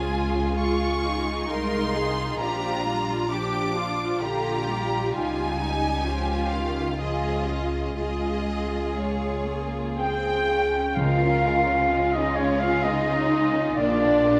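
A lush violin section carries the hopeful, moving melody of this cinematic excerpt in Db lydian, drifting rubato in 3/4 at 58-66 BPM over a second violin line, rich violas, a clear distant double bass section and background cellos, until a clear clarinet, a background oboe, a very quiet airy flute ensemble and mellow French horns join at 10.0 seconds and hard-mallet timpani sound briefly at 11.0 seconds, all on a moderately reverberant scoring stage.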